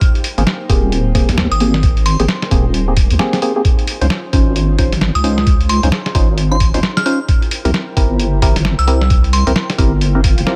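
Swung sixteenths drive this bouncy, moody two-step garage excerpt, cut from a longer piece, with a gritty, pitched-down kick thumping alongside a compressed sampler-style kit of hi-hat and medium-tuned snare that sounds tape-warm and re-recorded in a small room. A deep, dark wobble bass enters at 0.4 seconds, its detuned square and sine tones thickened by chorus and tube saturation and sitting prominently in the mix. Hollow, organ-like stabs arrive at the same moment, mellow and decaying, treated with chorus, phaser and dub echo while a filter sweep runs across them for the whole passage. Behind them an airy, breathy pad holds sustained chords through Abmaj9, Dbmaj9 and C7, softly pumping against the kick from deep in the background. A crystalline FM bell melody warbles with tremolo and echo, first briefly at 1.5 seconds and again from 5.2 seconds, before an electronic swell rises in the background at 10.1 seconds, all in a dry, close space.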